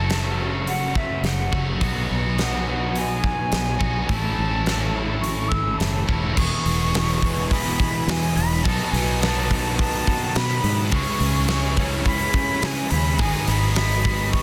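Hazy and blissful, this 105 BPM shoegaze and dream pop excerpt in E major pairs a pure, distant concert flute melody with vibrato and analog delay over a biting overdriven guitar riff bathed in reverse reverb, a dark, thick fuzz guitar with ensemble chorus in the background, a round, foam-muted fingered bass, a huge up-front arena drum kit with a fat snare and punchy, soft-clipped kick, and a shimmering, retro pulse-width pad that enters at 1.8 seconds, all in a dense, heavily limited modern master.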